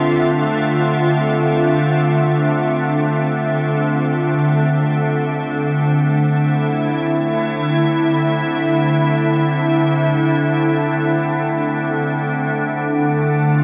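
A soft, pure organ-like pad with a detuned chorus shimmer plays alone in free time through this melancholic, reflective ambient passage in D minor, sustaining chords from Dm9 to Am/D at 4.2 seconds before settling on Dm at 12.5 seconds, its slow-blooming tone washed in diffuse delay and a vast cathedral reverb and blurred by the warbling pitch drift of a worn old cassette tape.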